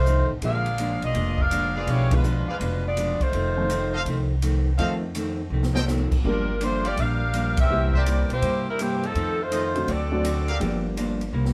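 A saxophone section with an edgy, up-front tone carries the melody from the first moment over clear trumpet stabs, woody pizzicato upright bass, dark clean hollow-body guitar, an airy drum kit with a high-tuned snare and punchy kick, and a natural baby grand piano joining at 0.4 s, in an energetic, joyful big band swing at 165 BPM in F mixolydian, with band accents at 2.1 and 7.5 seconds and a drum fill at 5.5 seconds in a live room with moderate reverb.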